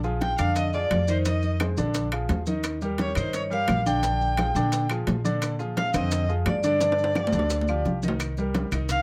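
Sunny and sophisticated, this brisk Afro-Cuban jazz fragment in Bb mixolydian at 173 BPM sets a dark, ringing vibraphone melody with slapback echo over a smooth bowed erhu second line, warm up-front concert grand piano chords and a woody pizzicato upright bass, while congas, round low-tuned bongos, metal-shelled timbales, grainy maracas and background claves drive the groove in a moderate club reverb, with a drum fill from 6.8 to 8.2 seconds.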